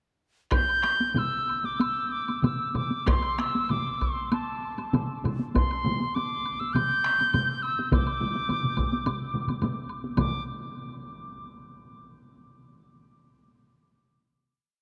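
A straight four-beat pulse gathers speed through this short, driving Japanese traditional taiko piece, with an up-front solo taiko drum on hard sticks repeating its pattern in a live room. Around it, three taiko ensembles add weight: one close and dry with a repeating pattern, one distant in the background with taiko phrases, and one very quiet with phrases of its own, while a woody, dry woodblock repeats its figure behind them. Over the top, a bright wooden piccolo with a pure tone, vibrato and soft attack plays an ornamented modal melody. The whole ceremonial piece sits in a vast, echoing cathedral space, and the ensemble stops by 10.7 seconds as a final note rings to 12.3 seconds.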